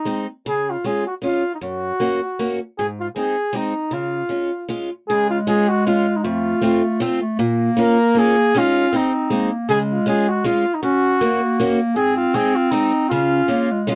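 A warm flugelhorn with light vibrato carries the melody in this bouncy, jolly alpine folk dance excerpt in 3/4 at 156 BPM in Db major, over a bright, boxy picked steel-string acoustic guitar, while a clear clarinet joins with a second line at 5.1 seconds, all in a dry, close 1970s-style studio sound with light reverb.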